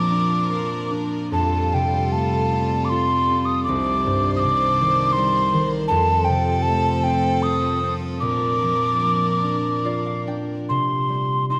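Moving in a loose, rubato triple metre, this Celtic slow air drifts with a longing, haunting mood, cut from a longer piece. Up front, a metal mid whistle carries the melody with an airy, hollow tone, its tongued notes showing a soft chiff and gentle vibrato, while rolled-off highs keep it mellow. A concert harp, also close and present, supports it with fingerpicked accompaniment that rings out across a deep range, lending an acoustic glow. Beneath them, a chamber string section holds sustained bowed chords, an earthy ensemble sound with light vibrato and a smooth top, until it falls away at 10.6 seconds. Near the close, the harp adds a fill from 9.4 seconds as the harmony settles on an open C chord at 10.7 seconds. A moderate scoring-stage reverb surrounds the whole with a spacious, lingering tail.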